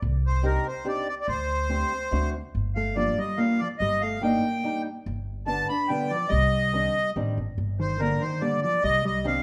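A moderate recital-hall reverb gives this bittersweet, whirling musette waltz in G minor an open sense of space, moving at 143 BPM in 3/4 with a straight feel. A woody, thumpy pizzicato upright bass sits up front from the start, joined at 0.3 seconds by a reedy, airy accordion carrying the melody with slow beating. Beneath it, a boxy fingerpicked acoustic archtop guitar plays the accompaniment with audible finger squeak, and a dark, clean, compressed hollow-body electric jazz guitar adds a second line from 2.8 seconds in this excerpt from a longer piece.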